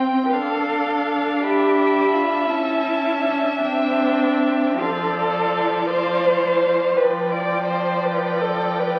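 Lyrical and serene, this short excerpt from a slow romantic movement for string quartet sways in a rubato 6/8 at around 47-57 BPM, with two violins, one carrying a smooth, vibrato-rich melody and the other an even second line, over a viola and cello that sit up front with expressive portamento, all heard through a recital-hall reverb and the crackle of a very old 78 rpm record.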